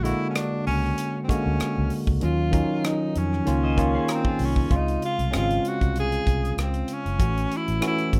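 Lush and romantic, this 1970s-style soul passage at 96 BPM in Db major sets a breathy, whispered tenor saxophone melody with scooped notes, vibrato, slapback echo and plate reverb over bell-like tine electric piano, a dark, round, foam-muted fingered electric bass and a tight funk drum kit of hi-hat, kick and rim click with a gentle 16th-note swing, while a clean, picked electric guitar riff with tremolo sits in the background from 3.6 to 4.7 s, all captured in a small room with a rough home-demo feel.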